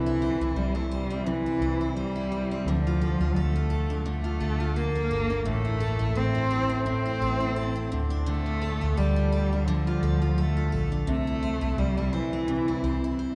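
A deep cathedral reverb surrounds this short passage, cut from a longer acoustic pop piece, and gives it the lingering air of a church or concert hall. The mood is wistful and tender, with a light sixteenth-note swing in 4/4. A single bowed cello carries the melody up front, its tone warm and expressive with vibrato and portamento. A picked jumbo steel-string acoustic guitar plays a full-bodied accompaniment, with finger squeak audible. Beneath them, a vintage fingered electric bass, foam-muted and amped, gives a dark, round, punchy low end. All three parts play from the start, moving through C, Dm, Am and back to Dm before arriving on C at 11.1 seconds.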